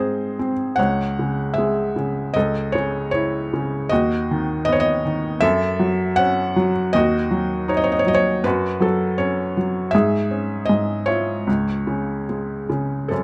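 Close, detailed microphones and a light reverb put a felt-muted upright piano up front, so its soft, mellow tone arrives with the audible noise of its action and the thin cushion of its felt. This is lyrical classical solo piano in C# minor, tuned to A4 = 439 Hz, moving in 4/4 at roughly 72-82 BPM with a rubato feel. The mood is melancholic and wistful, a brief passage cut from a longer piece that plays alone from 0.0 to 13.2 seconds across a range from C#2 to F#5. The harmony opens on G#, settles into C#m, then passes through A/C#, B/D#, F#m and D#m7 before an open F#5 at 8.4 seconds. It ends by moving from C#m/G# to a final C# major chord at 11.5 seconds, which brings a touch of light to the close. The intimacy of the muted instrument makes the performance feel private, as if heard from beside the keyboard.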